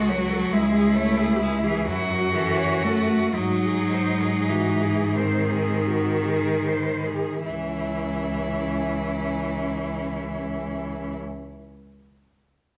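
Four bowed cellos enter together in this solemn, elegiac classical fragment in C# minor, a rubato 6/8 at 24-47 BPM that slows through its first 7.5 seconds: a distant, warm top voice sings the melody with vibrato and portamento, a smooth, even second line sits close beneath it, a focused accompaniment stands up front, and a soft-attacked bass, also up front, glides with expressive portamento, all bathed in a wet 1.4-second recital hall reverb over small room ambience before the harmony settles back on C# minor at 7.5 seconds.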